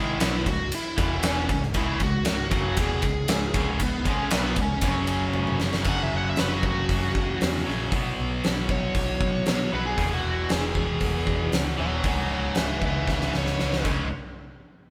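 Hard rock with a heavy, aggressive mood, this excerpt from a longer piece drives at 116 BPM in a straight 4/4 feel in C# minor. A high-gain, double-tracked rhythm guitar sits up front with a bright, picked riff, while a picked electric bass adds a growly, amped punch beneath it. The huge arena drum kit, entering at 0.2 seconds, has a big-room sound with a fat snare and punchy kick, working through crash, ride, hi-hat and toms, with fills at 5.4 and 13.1 seconds. A bluesy overdriven lead guitar carries the melody and moves into a solo at 5.9 seconds as the harmony shifts from C#m and E5 toward F#5, B5, E and C#5. The band sounds like it is playing live together in one room, with a touch of light reverb.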